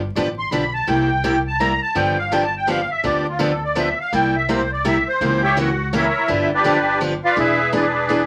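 A swung waltz lilt drives this playful, charming stretch of acoustic string swing, cut from a longer piece, with a woody, thumpy upright bass on gut strings starting at 0.0 seconds and a bright, picked steel-string acoustic guitar with fresh strings and audible finger squeak comping up front from 0.2 seconds. A reedy, shimmering musette accordion carries the melody as a solo from 0.4 seconds, weaving over changes that move from G7 to C7 and through a C#dim7 before landing on E7. The small room adds a moderate reverb, and a layer of vinyl crackle lends the recording an old-record patina.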